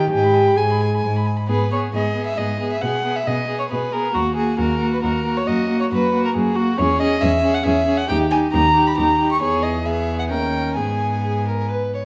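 Moving in a quick triple time at 135 BPM, the beat stretches and gives with an uneven, rubato feel, lending this classical-period string quartet movement in G# minor a spirited, cheerful lilt. The first violin carries the melody up front and close, its gut-string tone airy, nasal and reedy in period style as it climbs as high as C#6 before dropping out at 11.7 seconds. A second violin sings a supporting line beneath it, while the viola fills in the accompaniment in the middle register. The cello anchors the bass with a rich, bowed sound reaching down to D#2. The harmony moves from G# minor through D# minor, F#6 and E before a D#7 turns back to G# minor at 10.8 seconds. The quartet sits in a wet recital hall reverb, and the whole sound carries the worn, warbling pitch drift of old cassette tape, as if cut from a longer performance.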